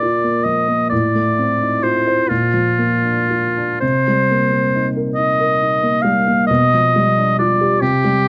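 A clear, up-front oboe sings a tender, lyrical melody in classical style over a dark, mellow, worn-sounding baby grand piano with long sustain, this brief romantic excerpt in Bb major unfolding in a slow, rubato 6/8 at 38-46 BPM in dotted quarters, with light reverb, moving from Bb through F7/A and Cm7 to a G7/B at 6.5 seconds before it is cut off at 8.3 seconds.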